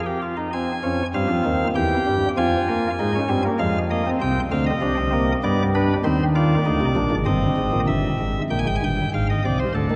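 In a straight triple metre, this driving, solemn baroque-style three-part fugue unfolds on a solo chamber organ sounding its cornet stop, whose nasal voice, with its chiff at the onset of notes, sits up front across a range from deep bass to high treble. The harmony moves through chords in F minor, and a new section begins at 7.9 seconds before the passage, cut from a longer piece, breaks off at 10.0 seconds. A long, wet cathedral reverb lets every line ring out into the vast space.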